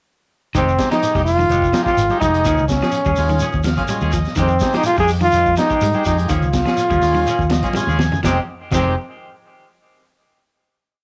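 Hypnotic and funky, this short afrobeat piece in F minor moves at 125 BPM in a straight 4/4, cycling between Fm9 and Eb9sus4 before settling on a final Fm9 chord at 8.2 seconds. A brilliant trombone sits up front with a motif-based melody of call phrases, its light vibrato and smooth top touched by plate reverb and cassette tape color. Underneath, a dark, round, foam-muted fingered bass plays a punchy syncopated riff, while a crunchy breakbeat kit with a high-tuned snare, punchy kick and dark cymbals lays down a gritty, saturated afro groove with a rolled-off top, adding a drum fill just before the close. A bright, clean semi-hollow guitar strums upper chord shapes with plate reverb and tape echo, and a slightly broken-up guitar picks a background arpeggio ostinato through spring reverb. A buzzy vintage combo organ adds rootless syncopated stabs and fills, with a grainy shekere and very quiet, thin-skinned congas rounding out the percussion in a small-room, home-cassette sound.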